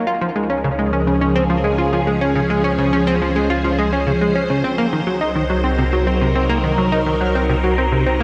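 Ambient, sequencer-driven space music at 105 BPM in 4/4 with a straight feel, this short passage cut from a longer piece sets a hypnotic, expansive mood. A phased string machine holds sustained chords throughout, its swirling, bright sawtooth tone shaped by ensemble chorus and a phaser with a slow attack and long release, sitting up front. Alongside it, a plucky analog bass plays a punchy, funky riff built from sawtooth and square waves with ring modulation and a fast-attack filter pluck, coloured by subtle chorus, vintage 12-bit sampler grit and tape echo. From 0.5 seconds an analog drone joins in the low register, a mellow, evolving bed of detuned sawtooth and pulse-width-modulated tones under chorus. The harmony moves from Dbmaj7 to Cm7b5 at 4.6 seconds, all of it bathed in a wet concert hall reverb and the patina of cassette tape.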